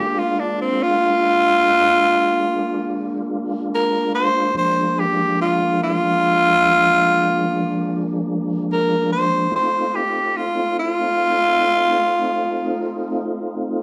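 Laid-back and soulful, this short blues passage, cut from a longer piece, moves at a slow 48 beats per minute in 12/8 with a straight feel. A growling tenor saxophone carries the melody as a jazz-style solo, its tone breathy and raspy with a soft attack and a gritty subtone edge, sitting up front in the mix. Alongside it, a tonewheel organ holds sustained chords in a mellow, flute-like voice, clean and soft, colored by chorus vibrato and a slow rotary speaker. The harmony rests on Bb7 before shifting to F7 at 9.5 seconds, and the saxophone drops out at 13.2 seconds while the organ sustains until 13.8 seconds. The two players sound as if performing live together in a large studio with a moderate reverb, though lossy compression artefacts color the sound.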